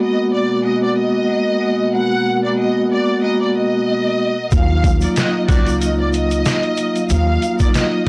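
This short cut from a longer boom-bap hip-hop piece opens on a vibraphone with soft mallets, mellow and ringing with a fast motor vibrato, sitting up front beside a distant, lush violin section that carries the melody with vibrato and portamento. Underneath, a smooth analog pad built from detuned sawtooth and triangle tones with a sub octave holds sustained chords in the background, softened by chorus, as the harmony moves from Abm9 to Ebmadd9 at 4.5 seconds. At that moment a compressed, pitched-down sampler-style drum kit arrives up front with a thumpy kick, medium-tuned snare and hi-hat, swung gently at 93 BPM. A woody pizzicato upright bass and a grainy, vintage tube shaker also enter there. From 5.2 seconds a clear, roomy jazz-style horn section adds distant stabs with an analog delay. The whole piece has a reflective, gritty mood, with a dry hardware sound, light reverb and a layer of vinyl crackle.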